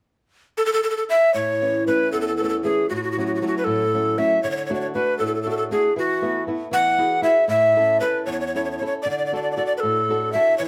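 A breathy tenor recorder carries the melody in this romantic, lively Italian folk excerpt in 6/8, its woody, tongued tone close-miked and up front, with vibrato, audible chiff and an unsteady delivery, entering alone at 0.6 seconds. At 1.3 seconds a fingerpicked flamenco guitar joins with warm, fresh-stringed accompaniment, moving through A, F#m/A, D and a suspended E before returning to A and D. The two play live together in one room, wrapped in a wet studio reverb.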